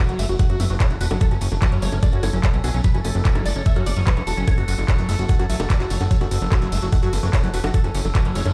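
Alien and driving, this cut from a longer psychedelic trance piece is anchored by a knocking, up-front electronic kick and a fat, detuned analog bass with a saturated filter sweep, while a drum and bass kit of bongos, handclaps, metallic hi-hats and ride cymbal, along with a jingly vintage tambourine, sits behind. A punchy unison supersaw stab carries the melody through phaser and tape echo, a squelchy, screaming distorted acid riff with digital delay and chorus pumps further back, and from 0.7 seconds an overtone-sweeping drone holds resonant sustained chords. A very quiet formant-sweep wobble bass appears briefly from 0.6 seconds and again at 7.1 seconds, and the mix has the feel of being played on a big sound system in a bare room.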